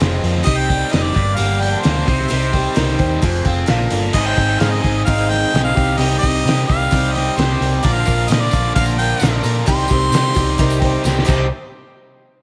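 A straight 4/4 groove from a cloth-damped, thuddy drum kit, with a fat snare and muffled cymbals, drives this reflective, wistful folk rock and heartland rock excerpt. From the first beat it plays together with a round hollow-body electric bass, a boxy picked archtop acoustic guitar with audible finger squeak, and a biting, double-tracked overdriven guitar riff. A clear harmonica carries the melody from 0.4 seconds, and a woody upright piano adds a second line in the background in brief passages; a reedy tonewheel organ enters with very quiet sustained chords at 7.8 seconds, a jingly tambourine follows, and light studio reverb surrounds the band until a drum fill at 11.1 seconds closes the fragment.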